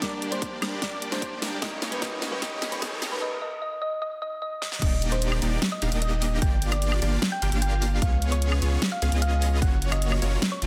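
Bright and lush, this future bass piece in Eb major moves at 150 BPM in 4/4 with a half-time feel, and it is cut from a longer piece. A round, tine-like synth pluck carries the melody throughout, with subtle chorus, delay and sidechain pumping, while a huge, detuned supersaw riff with vibrato pumps beneath it. A dark, mellow grand piano with vintage 12-bit sampler grit and delay sits in the background during the opening build-up, joined by a background riser, and both fall away at 3.2 seconds as the harmony drops out before the drop. A punchy electronic kick and an up-front pop kit with a fat snare, hi-hat, crash and woodblock drive the track, adding drum fills through the build-up. At 4.8 seconds the drop arrives with a deep, saturated sub bass, up front and pumping, under chords that move from Ebmaj7 through Gm7 and Db7 to Gbmaj7. The dense, heavily limited master has light reverb.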